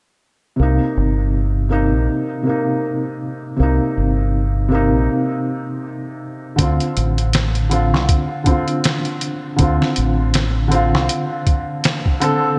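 A felt-muted upright piano, soft and intimate with harmonic tremolo, a low-pass filter and tape echo, carries this brooding, hypnotic trip hop excerpt at 80 BPM in C dorian, moving from Cm7 to Dm7 over a round, punchy deep dub fingered electric bass, while a gritty, pitched-down sampler-style drum kit with a thumpy kick enters at 6.6 seconds, all set in a lush hall reverb with bright 1980s-style digital production.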